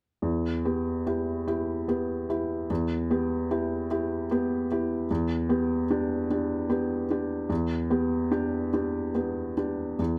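A felt-muted upright piano carries this brief classical fragment alone, its soft, mellow tone sitting up front with the thin felt and the audible action noise giving it an intimate, natural character. The mood is fragile and longing, set in E minor at a slow 49 beats per minute in dotted quarters, with a 6/8 metre played with rubato. The piano serves as accompaniment across a range from E2 to G4, moving from E minor to G over E at 5.1 seconds. Close, detailed microphones and little reverb keep the instrument close and dry. Cut from a longer piece, the passage lasts about ten seconds, with the piano sounding from 0.2 to 10.2 seconds.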